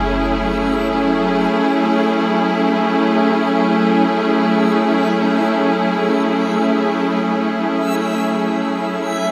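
Spacious and serene, this ambient excerpt floats in free time in F# minor, tuned slightly sharp with A4 at 441 Hz, and opens on an F#m9 chord. A muted studio string section sits up front, playing sustained, bowed chords con sordino with vibrato, its tone dark and veiled. Beneath it, a round analog bass holds a deep F#1 note with a fast attack, heard only until 1.5 seconds. Far in the background, a reversed, detuned granular texture swells high above the strings with a soft attack and long release, bright and dreamy in its own reverb, fading in from 1.5 seconds to the close at 9.3 seconds. The whole recording is bathed in a huge, wet ambient reverb with a 7.5-second decay, lending the still chords a vast, hovering space.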